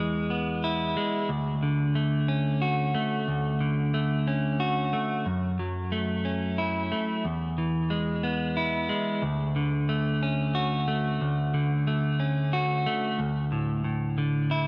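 A dark, picked clean electric guitar sits up front and plays solo throughout this short rock fragment, moving through E, Dmaj7 and F#m7 chords in D lydian at 91 BPM in a straight 3/4, tuned to A4 = 435 Hz. Digital delay trails its notes in a light reverb, giving a soaring, hopeful feel as the passage builds for its first 13.2 seconds. At 13.2 seconds it shifts to a new section on a D5 chord, and the fragment ends at 14.7 seconds.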